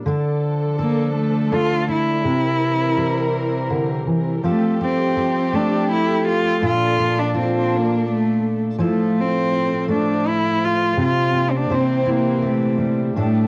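An intimate, up-front solo cello, bowed sul tasto with an airy tone, soft attack and light vibrato, enters at 0.8 s to carry the melody of this tender, hopeful acoustic folk-pop ballad in F major at 82 BPM in 3/4, over a full-bodied jumbo steel-string guitar fingerpicked with audible finger squeak and a warm, close chamber string section holding sustained chords, both guitar and strings carrying a cassette-tape character, in a wet-reverb home cassette recording whose harmony moves from Dm and C7 into Fadd9, Bbmaj7 and Fmaj7 before passing through C7sus4 to C7 at 11.7 s.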